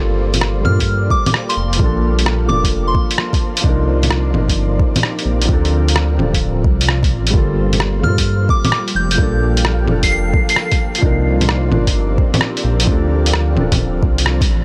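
A deep, rumbling detuned saw bass sits up front in this nocturnal, ghostly future garage excerpt in G minor at 130 BPM, swung on the 16ths and pumping under sidechain alongside a blurred granular cloud pad with its own reverb and a felt-muted upright piano whose mellow, intimate accompaniment carries audible action noise and tape echo. A soft overdriven electronic kick and a muffled, pitched-down sampler-style kit of bongos, hi-hat and rim click drive the groove, while a pure FM synth bell, shaded with chorus, phaser and analog delay, sings its melody from 0.7 s and returns at 8.0 s. The mix is dry over a Gm9, Cm11, Dm7 progression, with a band accent at 14.3 s.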